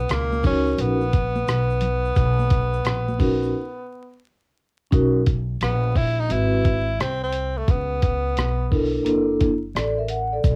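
A breathy tenor saxophone and a woody, dark upright bass open this cool, relaxed jazz-hop excerpt together, the sax playing a clear, jazz-style solo line with scooped notes and the pizzicato bass sitting dark and up front. A compressed, gritty sampler-style drum kit with a thumpy kick, hi-hat and rim click joins almost at once, swinging lazily in 4/4. Bright, hard-handed tube shaker and congas sit close but in the background, dropping out at the break at 3.5 seconds and returning only briefly at the very end. A mellow vibraphone played with soft mallets enters just after the opening and rings through the rest of the passage with a slow motor vibrato and a boxy small-room character, supporting harmony that moves from a lush major ninth chord toward altered dominants. The sax, drums and vibraphone carry a cassette-tape tint, and the whole home-recorded sound is dry, dusted with vinyl crackle, with the saxophone falling silent at 9.1 seconds as the piece continues beyond the cut.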